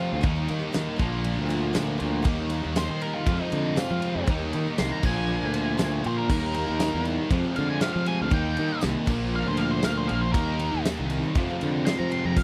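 A dry, close 1970s-style studio sound frames this gritty, driving classic rock at 119 BPM, where a dark octave-fuzz lead guitar with distortion and slapback echo solos over a repeating Eb, Bb and Fm progression. Up front, a growly, punchy fuzz bass anchors the groove, while a big acoustic drum kit with a fat snare and tight kick enters at 0.2 seconds and a jingly tambourine joins at 0.7 seconds. Three overdriven riff guitars sit in the background (one bright, one biting, and one phased and double-tracked), and a very quiet, shimmering twelve-string acoustic guitar adds picked accompaniment beneath them.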